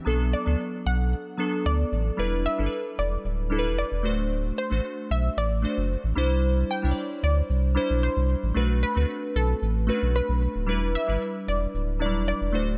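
Glassy digital keys with chorus open this sultry, mellow afrobeats excerpt in E minor at 113 BPM, joined almost at once by a deep, round sub bass sitting up front. An analog pluck carries the melody from 0.3 seconds, its detuned sawtooth tone bright and treated with chorus and digital delay, while the music moves through Bm7, Em7, D7 and Cadd9 with a new section arriving at 2.2 seconds. The sound is dry, with little reverb.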